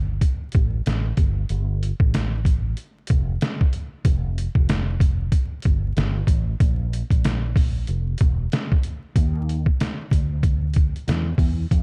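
A round, dark fretless electric bass with ensemble chorus opens this cool, smooth jazz-hop excerpt in F major at 94 BPM, joined at 0.2 s by a gritty, compressed, pitched-down trip hop sampler-style kit with a thumpy kick, medium-tuned snare and hi-hat, both parts up front in a dry, warm production dusted with vinyl crackle, swinging on the 16ths in 4/4 and shifting into a new section at 9.2 s.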